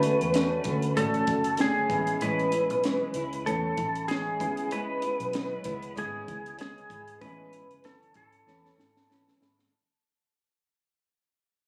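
A lightly swung 96 BPM groove in 4/4 carries this sunny, laid-back indie and bedroom pop passage in A major, cut from a longer piece and fading throughout. A bright, twangy lap steel slide melody sits up front with subtle chorus and tape echo. Behind it, a fingerpicked flamenco guitar shimmers with lush chorus and vibrato, a woody upright piano with a cassette-tinged tone hangs mellow in the background, and a round, foam-muted vintage electric bass adds depth. A compact cocktail kit with a dry, high-tuned snare and punchy kick plays throughout, adding a fill from 8.5 to 9.7 seconds, all heard as if captured on a phone in a club-reverb room over Dmaj7, Amaj7 and C#m7 chords.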